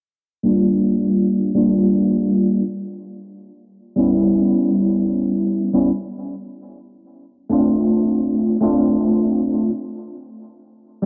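This vaporwave excerpt drifts by at 68 BPM in a nostalgic, dreamy mood. A lone tine electric piano enters at 0.4 s, up front and clean yet warm. It carries chords from G3 to F4 through analog chorus, 12-bit sampler grit and tape echo, moving from Gm7 to Em6/G to Dm7/A before the harmony drops out at 9.7 s. The piano sounds as if played through built-in speakers, and the whole fragment sits in a moderate plate reverb on worn, warbling cassette tape with pitch drift and a low-pass filter sweeping across its full length.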